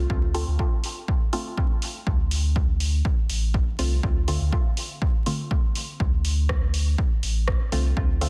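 A lightly swung 122 BPM 4/4 pulse drives this nocturnal, hypnotic dub techno excerpt in D minor, where a punchy electronic kick sits up front beside a deep, clean sine sub bass pumping under the sidechain, while an analog drum machine adds hi-hat and rim click from 0.3 seconds, all drums re-recorded in a large room, and a muted, detuned sawtooth-and-square chord stab on Dm7 plucks through phaser and dub echo over digital ambience, vinyl crackle and a dense, heavily limited master.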